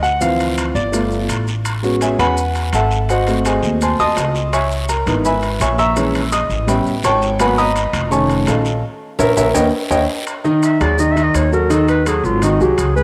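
A driving, sultry Afro-Cuban jazz fragment opens with an up-front concert grand piano soloing in a smooth, deep-voiced vintage tone with cassette-tape colour, over thumpy, woody pizzicato upright bass on gut strings, a raspy, close guiro that drops out at 10.0 seconds, grainy maracas and distant, ringing metal-shell timbales, the band striking an accent from 8.8 seconds before a breathy, whispered clarinet with light vibrato, soft attacks and scooped notes, also cassette-tinged, takes the solo at 10.6 seconds, the whole recording bathed in a lush hall reverb.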